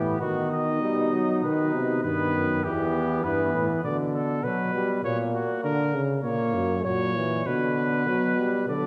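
A brass quartet rings out in a resonant recital hall, its 1.7-second reverb giving the sound a churchly glow. This classical, imitative canzona moves at 99 BPM in straight 4/4, joyful and elegant, and is cut from a longer piece. The trumpet carries the melody up front with a smooth top and light vibrato, while the mellow flugelhorn sounds distant and roomy on the second line, dropping out at 3.8 seconds and returning briefly at 8.7 seconds. The trombone supplies a smooth-topped accompaniment, and the bass trombone anchors the low end up front with a soft attack and light vibrato. The harmony starts on B and passes through E minor and B minor to F# before settling back on B minor at 7.5 seconds.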